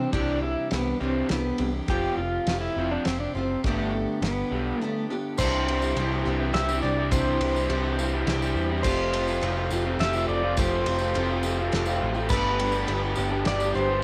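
A nostalgic, jangly folk and heartland rock piece in 3/4 at 104 BPM opens with a twangy, compressed pedal steel guitar carrying the melody in C major, with volume swells and slide, over a bright picked acoustic guitar with finger squeak, a double-tracked overdriven garage guitar riff, a round, dark dub bass up front, and a dry 70s drum kit with a fat snare, tight kick and dark cymbals. After a brief break at 4.8 seconds, a jingly, distant tambourine joins at 5.4 seconds as the Cadd9, Fadd9 and Gadd9 chords cycle again. At 12.3 seconds, a very quiet, flute-like tonewheel organ with key click and slow rotary speaker adds sustained chords, all within a moderate booth ambience and the character of a home cassette recording.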